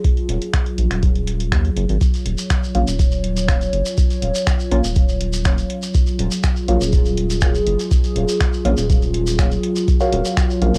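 This nocturnal, cavernous slice of dub techno opens on a dark analog pad of detuned, slow-attack chords, colored by chorus, phaser, sidechain pumping and cassette tape grit, together with a dry, up-front electronic kick and a tape-softened deep house kit of finger snaps and hi-hat. A round analog bass joins almost at once, its wave-folded low end thickened by transformer saturation and sidechain pumping. At 2.0 seconds a grainy acoustic shekere brings a live-room texture, and at 2.7 seconds a soft, mellow chord stab arrives, evolving under filter sweeps and trailing dub echo through chorus, phaser and tape. A warbling, lo-fi pluck flickers briefly at 10.0 seconds, detuned and dusty with its own echo. Light reverb and a home cassette recording give the whole excerpt a murky, intimate character.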